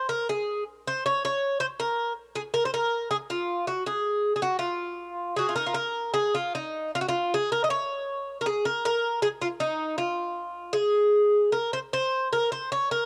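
Heard through the faint mains hum and light reverb of a small-room home cassette recording, this mournful, passionate fado fragment, cut from a longer piece, features a lone acoustic Irish bouzouki, picked up front with a metallic, double-strung ring in a loose rubato over an uneven 2/4 pulse, its opening passage returning at 6.1 s before it breaks off at 13.1 s.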